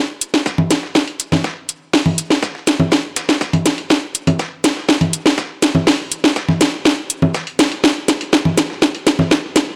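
Bathed in light reverb, this driving, melancholic techno fragment at 122 BPM is one continuous drum-fill build-up. An up-front house kit with cracking snare, metallic hats and congas leads, while a gritty sampler-style soul kit of hi-hat, shaker and fat snare sits in the background, its hats and shaker pumping with sidechain and all three high-pass filtered, and a punchy electronic kick sits behind from 0.5 to 9.4 seconds.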